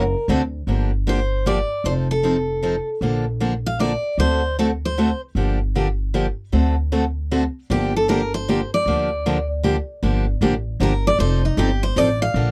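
This is a dry, close recording in a 1970s studio style, with every instrument sitting up front. It is a bittersweet, virtuosic passage of acoustic string swing in the gypsy jazz tradition, set in a swinging triple metre and cut from a longer piece. A picked steel-string dreadnought guitar with fresh strings and a rounded tone carries the melody, with audible finger squeak. It pauses at 5.2 seconds and returns at 7.7 seconds. Underneath, a brighter concert-body steel-string guitar, also picked and squeaking, keeps up the accompaniment throughout, while a pizzicato upright bass on gut strings adds a woody, thumpy low end. The harmony moves through minor-seventh, dominant-seventh and major-seventh chords, and at 10.0 seconds the music shifts into a new section as a guitar solo begins.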